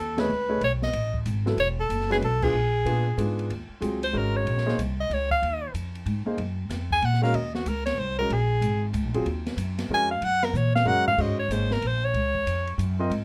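An up-front soprano saxophone with vibrato, subtone and scooped notes leads this spiritual, cool modal jazz waltz in swung 3/4, cut from a longer piece, and after early band accents it takes a solo from 3.5 s. A woody, growly pizzicato upright bass and an intimate grand piano with audible action noise support it, while an acoustic drum kit with dark cymbals and a boomy kick plays a fill at 10.5 s. A small room gives the ensemble a moderate ambience.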